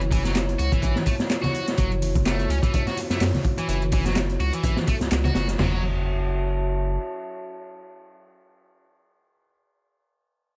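A gritty, funky breakbeat excerpt at 126 BPM in F# minor opens on a drop, with a dark analog pad, a thick saturated sub bass and an overdriven analog drum machine sounding together on an F#m7 chord. Within a split second a crunchy breakbeat kit arrives up front, its punchy kick, high-tuned snare and dark cymbals rolled off at the top, while low-tuned, ringing congas sit close but in the background. A bright, high-gain guitar riff, picked and double-tracked, cuts through with distortion, 12-bit sampler grit and delay. The swung sixteenths give the groove a loose, funky push, and the drum machine adds handclaps, hi-hat and ride beneath the heavier kit. Around 5.6 seconds the drums and guitar fall away, the deep sine-based sub bass holds until 7.0 seconds, and the moody, detuned pad, with its slow attack, chorus and sidechain pumping, sustains alone until 8.9 seconds in a small room ambience.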